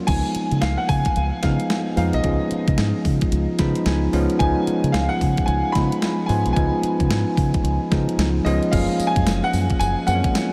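Punchy and confident, this new jack swing R&B clip moves at 111 BPM with a swung sixteenth-note feel, sitting on a C#7 chord before shifting to F#maj7 at 8.7 seconds. A crisp, overdriven 8-bit drum machine with a thumpy kick, medium-tuned snare, hi-hat, crash and tambourine sits up front, joined by a deep, round dub fingered bass, while a bell-like tine electric piano comps brightly and adds a fill from 3.3 to 4.4 seconds. Above them an intimate grand piano carries the melody with audible action noise, a subtle chorus and analog delay, all bathed in a huge, dreamy ambient reverb.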